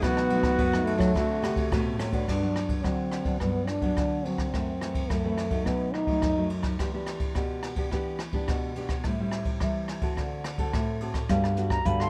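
A growling, raspy trombone carries the melody of this joyful, playful samba and choro fragment, scooping into its notes in a jazz style with a plate reverb until 6.5 seconds, while a reedy silver flute with vibrato and a crisp attack adds a second line at the start and again near the close. Two fingerpicked nylon-string guitars fill out the harmony, one playing the chords throughout and the other a bass line that drops out after 2.2 seconds and returns at 11.3 seconds. An airy brush kit with dark cymbals and a boomy kick sits up front in a small room, and the whole recording carries the warbly pitch drift of worn cassette tape.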